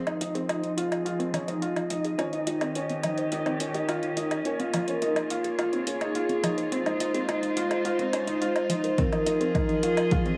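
A moving, intimate piece of piano and strings electronica in F minor at 106 BPM, this excerpt from a longer work builds throughout as a filter sweep gradually works on the bowed, vibrato-rich string quartet, whose sustained chords also carry sidechain pumping over a progression from Fm7 through Eb7, Bbm7 and Ab6. Up front, a woody, slightly detuned upright piano riffs with tape echo, while a velvety, detuned synth lead sings the melody with chorus and echo, and a soft, gritty pluck arpeggiates in the background over metallic, overdriven hi-hat and woodblock and a barely audible round analog bass. At 9.0 seconds a punchy, overdriven electronic kick drum arrives, all set in a moderate echo chamber reverb.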